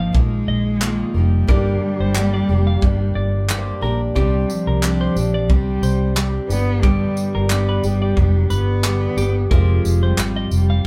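Recorded as a band playing live in one room with moderate studio reverb, this tender, reflective acoustic pop passage sets an expressive bowed cello melody, rich with vibrato and portamento, over full-bodied picked steel-string acoustic guitar, a very quiet, polished grand piano, clean, compressed electric guitar arpeggios and a dark, round, foam-muted fingered electric bass up front, while a natural country drum kit with punchy kick, handclaps and tambourine carries a gentle sixteenth-note swing, and a crisp group handclap barely surfaces at 10.2 seconds.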